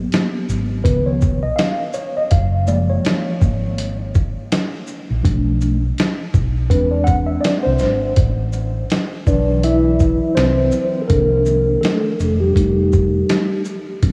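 Soaked in a huge, dreamy reverb, this smoky, mellow jazz-hop clip from a longer piece has a clean, up-front tine electric piano soloing over lush chords such as F#maj9 and Am69, a dark, round fretless bass and a muffled, compressed, pitched-down sampler-style drum kit with a thumpy kick, medium-tuned snare, hi-hat and shaker, all swinging gently on the 16ths.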